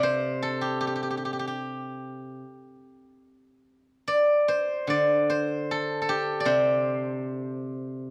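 Close, detailed microphones and a light touch of reverb place this brief recording in an intimate space, with a single steel-string zither sitting up front. The piece is Chinese traditional music for solo plucked strings, serene and elegant in mood, and it is cut from a longer work. Played with fingerpicks, the acoustic zither has a silvery, ringing tone that stretches from C3 to C6. The phrasing is rubato, so the time flows freely rather than keeping a strict pulse, even though the music sits in four. The zither plays alone for the whole 8.1 seconds.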